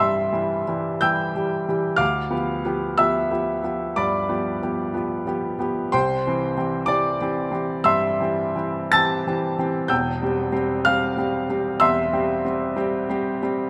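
A clear, intimate grand piano, up front with audible action noise, carries this short, hopeful and lyrical romantic character piece in C major at a slow 62 BPM with rubato, ranging from deep bass to bright treble over chords moving from C to G7/D and back, set in a moderate concert hall reverb and caught by close, detailed microphones in a 13.7-second cut from a longer work.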